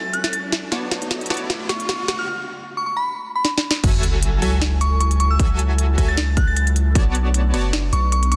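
A dense, heavily limited mix with light reverb frames this lush, dreamy future bass excerpt, set in a lightly swung half-time feel. A glassy FM synth bell carries the high melody over a breathy, phased pad and a deep sine 808-style bass, all three pumping with sidechain, while a trap kit with sharp snare and crisp hats rolls through fills and a riser builds toward the drop at 3.8 seconds. There a hard-clipped electronic kick hits up front, a sub drop and impact land, and a bright, detuned supersaw stab riff, heard briefly earlier, returns low-pass filtered and fed through digital delay to drive the chords.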